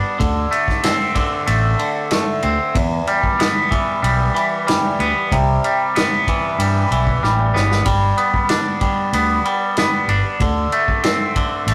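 A twangy electric guitar opens this psychedelic rock excerpt alone, its bright, clean picked riff coloured by phaser and sitting up front, before fingered electric bass and a vintage drum kit join at 0.2 seconds. The mood is dark and trippy, moving at 94 BPM in a straight 4/4 feel, with the tuning set slightly sharp at A4 = 441 Hz. The bass is round and amped, holding the low end from G1 to G2, while the guitar ranges from E2 to D4. The drums use kick, snare and ride, with a tight kick, medium-tuned snare, dark cymbals and a rolled-off top, placed up front, and a drum fill lands at 7.2 seconds. The harmony moves from D5 through Em, Cmaj7 and G before returning to D5. It all sits in a moderate booth ambience with a rough rehearsal-room character and warm saturation.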